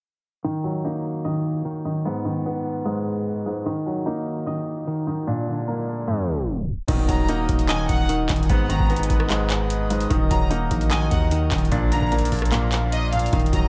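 This excerpt sits in a hazy, low-passed digital ambience, with a filter sweep running through its opening half and a tape stop closing it at 6.9 seconds. The mood is melancholic and eerie, a half-time trap beat that opens on a soft, muted upright piano up front, its thin felt and audible action noise giving an intimate feel. Alongside it, a clean, compressed hollow-body electric guitar plays dulled arpeggios through a digital delay, and a very quiet electronic riser slips in at 5.5 seconds. From 6.9 seconds a booming analog drum machine, tape-warm and re-recorded in a small room, sits up front with a deep kick, metallic hi-hats, handclaps, rim clicks and crash cymbal. A punchy, heavy 808-style bass with a noise layer decays in the background, and a reedy, breathing pedal harmonium holds dark chords beneath. A studio violin section then adds a pure, floating sul tasto second line high above, trailing delay as the chords cycle.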